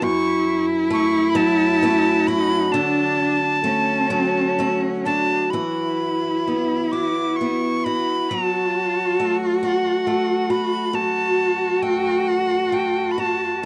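Mournful and longing, this rubato Celtic slow air in 6/8, cut from a longer piece, sets a breathy metal whistle with vibrato, a soft attack and chiff carrying the melody over a rich bowed cello second line full of expressive portamento and a boxy, picked swing-style acoustic guitar, all heard up front in a dry, close 1970s-style studio sound with light reverb as the harmony moves from F#m through D to Esus2 at 5.5 seconds.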